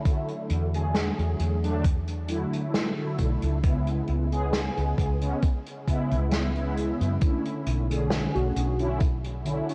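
A hazy, woozy vaporwave excerpt moves at a slow, lightly swung 4/4 pace over chords that drift from E9sus4 to C#m7 and on to Bm11. Mellow synth brass carries the accompaniment from the first moment, its detuned sawtooth tone brassy and round, smeared by phaser, ensemble chorus and tape echo. A thumpy, sampler-style electronic kick sits up front, joined by a distant, roomy acoustic kit whose hi-hat and medium-tuned snare, played with bundle sticks, are wrapped in gated reverb. A growly, hollow-body fretless electric bass enters at 0.5 seconds, dark and woody beneath a lush chorus. Near the close, at 8.3 seconds, a velvety, full-bodied synth lead briefly sounds a single F#4 with vibrato, chorus and tape echo, all set in a small room with a faint cassette tape haze.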